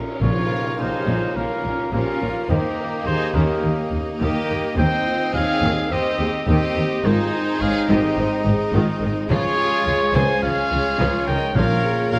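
A moderate scoring-stage reverb lends space to this adventurous, swashbuckling film-score excerpt, which strides along at 106 BPM in Bb dorian. A lush symphonic violin section carries the melody over mellow French horn chords, a dark viola accompaniment, and a bass line from the cellos and clear double basses. Trumpet stabs sit up front, while a bright concert flute, a cor anglais, a very quiet clarinet and an intimate studio violin section weave second lines in the background. Hard-mallet timpani and a very quiet tam-tam mark the opening band accent at 0.2 seconds; the tam-tam stops at 2.5 seconds, and the timpani return at 11.6 seconds as the chords come back round to Bbm.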